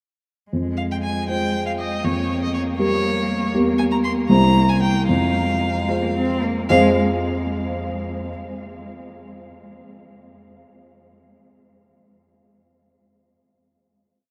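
Drenched in a huge, echoing reverb that places the players in a vast space, this brief, complete classical-period movement for piano trio feels stormy and restless in a straight 6/8. Up front, a dark, mellow concert grand with a smooth, vintage tone lays down deep bass and chords on the beats from 0.5 seconds. A distant, rich violin sings the expressive bowed melody with vibrato and portamento, and beneath it a warm cello adds tremolo, sustained chords and replies at phrase ends, before the strings stop at 7.0 seconds and the piano carries the final chord to 8.3 seconds.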